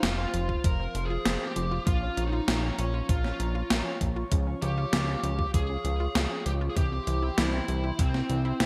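A straight 4/4 pulse at 98 BPM drives this moody synthwave fragment in F minor: a gated 80s drum machine supplies up-front, overdriven hi-hat and a gated-reverb snare, while a thumpy, tape-toned electronic kick joins at 0.5 s and drops out at 8.1 s. Underneath, a fat, detuned sawtooth bass with a filter sweep sits forward in the mix, and a dark, chorused pad with a slow attack and long release holds sustained chords moving from F5 through Bbm and Db to C, its level pumping with sidechain compression. A round, bright analog pluck spins arpeggios with chorus and digital delay in the background, and a smooth, picked electric lead guitar with overdrive and delay carries the melody, all within a bright, 1980s-style digital production with light reverb.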